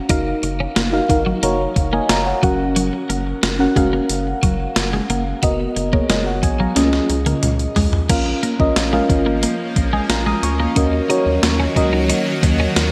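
A mellow, round FM electric piano sits up front with chorus, phaser and shimmer reverb in this nostalgic, uplifting 1980s-style pop piece at 90 BPM, adding a fill at 1.8 seconds. A bright, picked twelve-string electric guitar riff with analog chorus, a rubbery, hollow square bass and a thumpy, sampler-style digital drum machine with gated reverb carry it, the drums closing the first section with a fill before the second begins at 8.1 seconds. An ethereal ambient pad with octave-up shimmer enters at 9.0 seconds, all set in a lush hall with bright digital production.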